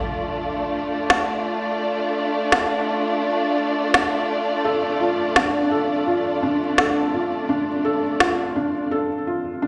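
A half-time drum and bass groove at 169 BPM swings its 16ths, with a woody, tape-warm electronic snare entering at 1.1 seconds over a dark string section that holds a sustained D minor chord, the bowed ensemble lush and vibrato-rich with a smooth top and a gritty 12-bit sampler edge. At 4.6 seconds a felt-muted upright piano joins with soft, mellow arpeggios of short sustain, also carrying sampler grit plus a digital delay, and it carries on through the brief closing break once the strings stop. The heavy, tense excerpt sits in a lush hall reverb, as if played on a big sound system in a bare room.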